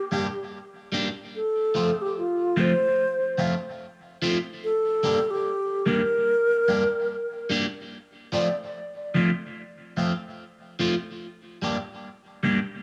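A swung sixteenth-note reggae groove in four sets a heavy, hypnotic mood in this cut from a longer piece, circling between G minor and F. An airy, up-front wooden-headed alto flute with vibrato and a crisp attack carries the melody through tape echo, while a picked, slightly broken-up electric guitar, treated with phaser and tape echo, supplies the accompaniment. The flute drops out at 8.6 seconds during the break that begins at 7.9 seconds, leaving the guitar to continue alone in a moderate spring reverb and small-room ambience until 12.6 seconds.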